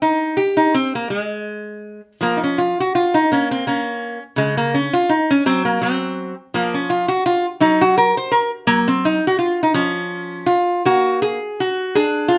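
A moderate studio reverb surrounds an up-front, metallic and nasal lap resonator guitar, played alone with fingerpicks and slide in this charming, nostalgic musette fragment at 166 BPM in 3/4, with a lightly swung, rubato feel, tuned to A4 = 444 Hz and moving into a new section at 2.2 seconds.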